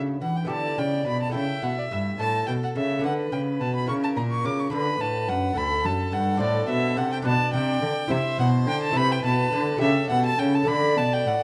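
Serene and dance-like, this baroque-style sonata movement in D major sways in 6/8 at 71 BPM, with a rich, gut-string violin carrying the melody up front from 0.2 seconds, a second violin adding an airy, nasal line beneath it, a warm, reedy cello grounding the bass, and a bright, delicate fingerpicked lute with double strings filling out the continuo, all heard through close, detailed microphones with light reverb in this short cut from a longer piece.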